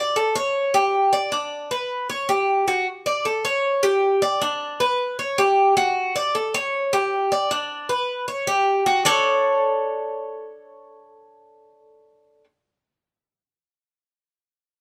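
A solo Cuban tres carries this bright, sunny Latin piece, its acoustic double strings sounding metallic and picked, with some strings doubled at the octave. The instrument sits up front in a light reverb, playing from D4 to D5 in D major at a relaxed 155 BPM in a straight 4/4. The harmony circles through D major seven, G, B minor over D and F sharp, a cycle that repeats as the passage unfolds. The passage moves through three short sections, with a fresh one beginning at 2.9 seconds and another at 9.1 seconds. Cut from a longer piece, it ends after 12.4 seconds.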